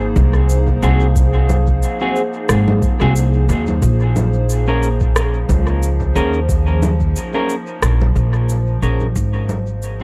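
Ambient dub with a deep, meditative mood, built on a woody, thumpy pizzicato upright bass up front beneath a warbling, nostalgic lo-fi pad with chorus and phaser, while tape-toned electronic congas, cabasa and rim click carry dub echo, an overdriven analog kick sits in the background, and a dark, clean electric guitar plays stabs with dub echo from 0.8 seconds, set in an echo-heavy mix that fades out from 7.4 seconds.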